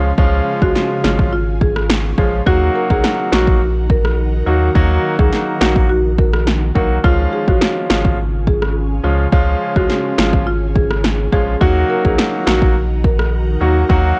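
A bright concert grand piano, an ethereal pad with chorus, phaser and sidechain pumping, and a thick, saturated sub bass open this hypnotic, bouncy dancehall excerpt, moving between Db and Eb minor chords. A deep house kit with a deep kick, punchy overdriven snare and rim click joins up front at 0.2 seconds, and a woody, dark marimba carries the melody from 0.6 seconds. The whole mix sits in a digital ambience with the worn, warbly pitch drift of old cassette tape.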